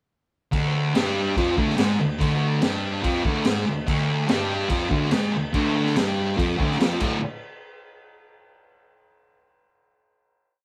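A band playing live in one room, caught with a moderate studio reverb, gives this short, complete garage rock piece its swaggering, rowdy energy at 144 BPM in a straight 4/4. A thick, double-tracked fuzz guitar sits up front with a picked octave riff over a Dmadd11 chord, moving to D5 near the end. A crunchy, saturated breakbeat drum kit brings a punchy kick, a high-tuned snare and dark crash cymbals with a rolled-off top. Both parts drive the riff from 0.5 seconds, and the piece closes on a final hit that rings from 7.2 to 8.9 seconds.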